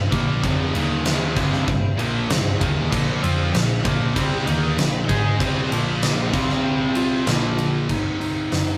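A rough rehearsal-room recording with moderate ambience captures a short, aggressive and heavy hard rock cut in C minor at 96 BPM, where a huge arena drum kit sits up front with a punchy kick and fat snare across crash, ride and hi-hat. Behind it, a double-tracked overdriven guitar and two bright, scooped high-gain guitars grind out the riff over Eb5, Cm, Bb5 and C5 chords. A dark, round hollow-body bass underpins them, and a compressed, slightly broken-up lead guitar enters at 7.0 seconds.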